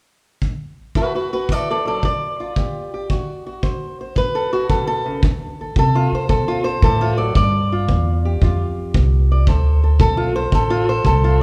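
Set in the moderate reverb of a church or concert hall, this gritty, soulful acoustic country blues cut from a longer piece swings at 113 BPM in 4/4. A tight, roomy kick drum with brushes starts at 0.4 s, and a dark, boxy, fingerpicked old ladder-braced acoustic guitar with old strings carries the melody over D, G7 and D7 changes. A thumpy pizzicato upright bass with gut strings enters at 5.2 s.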